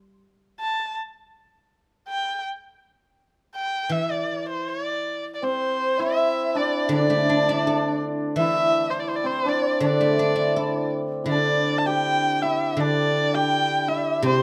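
A silvery guzheng pluck opens this festive, pastoral fragment of Chinese chamber music, and at 0.6 seconds a dark, up-front erhu takes the melody, bowed with vibrato and expressive portamento in a free, rubato feel. The fingerpicked guzheng returns as ringing accompaniment at 3.9 seconds, and at 5.4 seconds a shimmering hammered dulcimer and a very quiet, airy, reedy bamboo xiao join as second lines. Close, detailed microphones and light reverb frame this passage cut from a longer piece.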